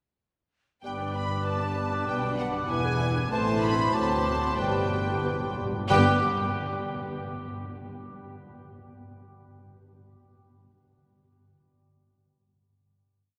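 A graceful, cheerful classical-period movement for symphony orchestra opens at 0.8 s with a soft-attacked violin section carrying the tune over sul tasto strings, doubled in unison and at the octave by a second, pure and floating violin section, while airy flute, close-miked oboe, dark bassoon and a very quiet French horn section sound chords in the rhythm of the tune, the bassoon also answering at phrase ends. Beneath them, violas rock a two-note figure in the background, cellos hold a sustained bass with passing notes, and double basses double the bass line, until hard-mallet timpani enter with a fill at 4.6 s ahead of the final chord at 5.9 s. The whole short piece sits in a long, wet cathedral reverb, with audible lossy compression artefacts.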